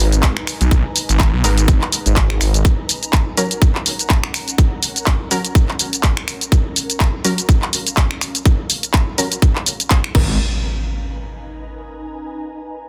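A swung, bouncy 4/4 groove drives this swaggering bass house excerpt, with a tight, tape-warm electronic kick joining at 0.2 seconds an up-front garage kit of hi-hat, shaker, finger snaps, handclaps and crash cymbal that plays from the start. A thick, swirling detuned saw bass, saturated and phased with sidechain pumping, grounds the opening before dropping out at 2.6 seconds and briefly returning near the end. From 1.4 seconds, a bold, punchy orchestra-hit-like synth stab carries a filter sweep, ring modulation, dub echo and built-in reverb, giving it a bright, layered bite. Beneath it all, an ethereal, airy pad with ensemble chorus and phaser slowly fades across the first section, pulsing with sidechain pumping as the harmony shifts between G#madd9 and F#. At 10.2 seconds an up-front electronic impact hits as the beat cuts, ringing out alongside the lingering pad in a dense, heavily limited mix.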